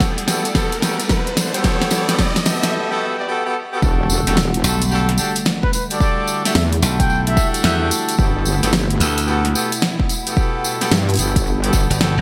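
A bright, 1980s-style digital production with a lush hall reverb frames this swaggering, playful glitch hop excerpt in E minor at 110 BPM, swung on the 16ths. A punchy electronic kick, a gated-reverb pop kit with fat snare and hi-hat, and a jingly tambourine drive a build-up where a riser, faint bowed strings, a nostalgic warbling tape-like pad and brilliant, pumping horn stabs with delay gather over Gmaj9, before a short break gives way to the drop at 3.8 seconds. There a heavy, saturated wobble bass enters on Em11 and a glassy slap bass joins at 4.6 seconds, a mellow classical-style trumpet sings a brief delayed melody from 5.6 seconds, and the strings return as the harmony settles back on Gmaj9 at 8.2 seconds.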